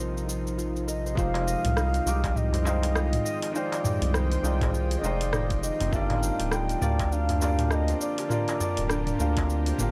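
Warm and hypnotic, this excerpt of organic downtempo moves at 101 BPM in 4/4 with a swung sixteenth feel in F dorian, tuned to A4 = 439 Hz, and shifts from Bb9sus4 to Fm9 at 1.2 seconds and Gm7 at 5.9 seconds. An airy bamboo bansuri with vibrato and a crisp attack carries the melody through analog delay and shimmer reverb. A soft, muted felt-muted upright piano with audible action noise, a mellow, thumb-plucked concert harp playing ringing arpeggios, a tense, detuned, string-like bowed-like drone in the background, a faint metallic bronze singing bowl, and a deep, round analog bass up front fill out the sound, while an afro-pop drum kit with hi-hat, rim click, shaker and toms is joined at 1.2 seconds by a gritty, thumpy electronic kick drum and at 1.3 seconds by a saturated metal-shell darbuka played with soft hands, all in a dry, gritty hardware recording with light reverb.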